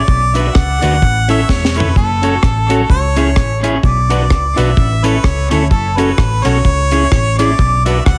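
A clear harmonica opens this joyful, bouncy ska clip, carrying the up-front solo melody with a light vibrato and a dub echo trailing its pop-style lines. Almost at once a dark, round, punchy hollow-body electric bass enters alongside a deep reggae drum kit, whose dry, high-tuned snare, tight kick, hi-hat, rim clicks and toms drive a swung groove, with a drum fill between 1.5 and 2.0 seconds. A grainy cabasa sits barely audible in the background. At 0.3 seconds a bright, twangy picked electric guitar at the edge of break-up adds accompaniment, while a mellow, percussive tonewheel organ punctuates with stabs through a slow rotary speaker and its own dub echo. The harmony cycles through Bm, A, F#m and C#m over a small room ambience, and the whole mix carries a heavily compressed radio sound; the clip is cut from a longer piece.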